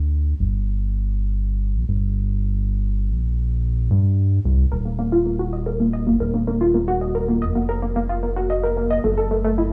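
A warbling, lo-fi pluck drifts in at 4.7 seconds with dark, wave-folded arpeggios soaked in lush chorus, cassette tape grit and digital delay, adding an eerie, glitchy edge to this IDM excerpt at 111 BPM in 4/4. Beneath it, a round analog bass holds the low end from the start, deep and detuned with a fast attack and sustained tone, while the chords move from Gm to Ebmadd9 to F#m7. A light small-room reverb gives the sound a close, intimate space.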